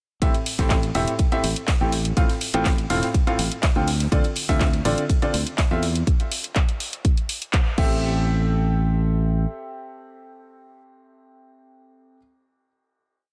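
A punchy electronic kick pounds four-on-the-floor under programmed hats, handclaps and crash from a house kit, while a very quiet looped rock breakbeat with ride and snare adds grit beneath. In this energetic, bittersweet piano house piece, a saturated, pumping fingered electric bass plays dotted-rhythm lines against a clear, worn grand piano riff of dotted-rhythm chords, colored by delay and sidechain pumping, all set in a small room ambience. The band hits an accent at 7.5 seconds before the groove gives way to a final hit; the bass drops out at 9.4 seconds and the piano rings on alone until 12.2 seconds.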